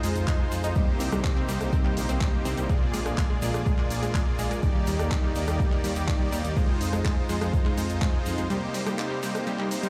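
An overdriven electronic kick drum sits up front with a deep, layered punch, entering at 0.3 seconds and dropping out at 8.1 seconds in this expansive, euphoric slice of progressive house in straight 4/4. Around it, a soft supersaw plays smooth, detuned stabs that also sit forward in the mix, while a bright unison pluck spins out punchy, decaying arpeggios, both breathing with sidechain pumping and trailed by delay. Underneath, a dark detuned saw bass rumbles and beats with its own sidechain pumping until it stops at 8.5 seconds, where a short break begins. An overdriven deep house drum kit adds handclaps, hi-hat and rim clicks, and a grainy egg shaker ticks very quietly, close and dry. The chords move from Fm7 through Cm7, Bb7 and Ebmaj7 before circling back, and the mix carries a big-room feel with a large studio reverb.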